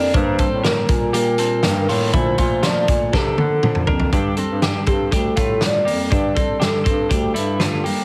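A straight 4/4 pulse at 121 BPM drives this nostalgic, youthful jangly indie pop fragment, with a loose, gritty, up-front drum kit (fat snare, punchy kick) rolling through a fill from 3.1 to 4.1 seconds into a new section over Gmadd9, Bbmaj7 and Gsus2 harmonies. A hollow, woody, soft synth lead carries the melody with vibrato and chorus, while a bright, twangy twelve-string electric guitar spins arpeggios over full-bodied fingerpicked steel-string acoustic guitar. A warm, vintage bass clarinet anchors the low end, and the whole mix has a heavily compressed, radio-like sound with light reverb.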